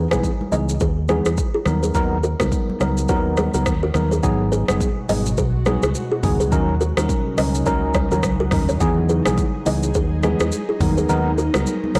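A blown-out, overdriven recording with light reverb carries this hypnotic, smooth afrobeats excerpt at 105 BPM in G# minor with a swung sixteenth feel, where a worn, slightly out-of-tune tine electric piano with analog chorus and a woody, hollow kalimba riff with tape echo sit over a round, dark fingered electric bass, an overdriven afro-pop drum kit with a deep kick, and very quiet, bright congas, before an ethereal, detuned pad with phaser drifts in at 4.9 seconds and the kick drops out at 11.1 seconds as the chords move through Emaj7, Bmaj7, G#m7 and D#m7.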